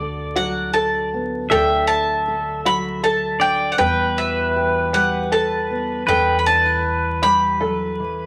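Wrapped in vinyl crackle and a moderate club reverb, this brief, peaceful acoustic folk passage in a gentle 6/8 at 52 BPM moves through D6, D, Emadd9 and A5/E as an up-front, bright, double-strung bowl-back mandolin carries the picked melody over a clean, compressed electric pedal steel guitar playing a twangy second line with fingerpicks, slide and volume swells, a dark fingerpicked steel-string guitar with audible finger squeak, a woody, thumpy pizzicato upright bass on gut strings, and an open-back banjo whose warm, plunky, percussive arpeggios enter at 0.4 s.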